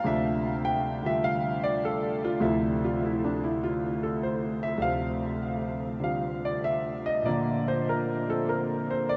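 Swinging and smoky, this short solo jazz passage, cut from a longer piece, moves at 100 BPM in 4/4 with a rubato, swung feel in D minor, as a lone concert grand piano with an intimate, up-front sound, deep bass and audible action noise, touched by subtle chorus and diffuse ambient delay, plays throughout the 9.2 seconds, shifting from Dm9 to Bb at 7.3 seconds inside a dreamy, softly darkened mix soaked in a huge ambient reverb.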